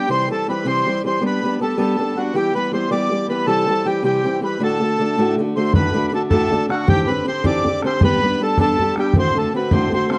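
A reedy, full accordion carries the melody up front, its close, dry sound giving the tune a rich presence in this cheerful, bright Celtic jig. Set in 6/8 at 106 BPM in dotted quarters with a straight feel, the piece sits in D mixolydian and moves through chords such as C, G, Em, D, Cadd9 and D7. A fingerpicked acoustic archtop guitar with fresh strings provides the accompaniment, sounding bright yet boxy, with audible finger squeak. At 5.7 s a bodhran enters with an open, boomy tone and a live-room character as the opening section repeats. The overall production is dark and warm with moderate studio reverb and a faint mains hum, and this short cut is taken from a longer piece.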